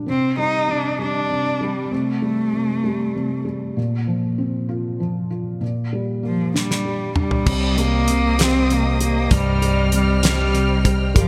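A felt-muted upright piano opens this dramatic, aching six-eight pop ballad at 65 BPM, its soft, mellow chords washed in lush chorus, while a bowed solo cello with a nasal, boxy tone, vibrato and portamento carries the melody through a digital delay, pausing briefly before returning. A damped 70s drum kit with a fat snare, tight kick and dark cymbals comes in at 6.6 s under gated reverb and plays a fill leading to 7.5 s. There the music settles in C minor as a round, punchy fingered electric bass and a sul tasto studio string section holding woody sustained chords join, set in light reverb and small room ambience within a bright 1980s-style digital production.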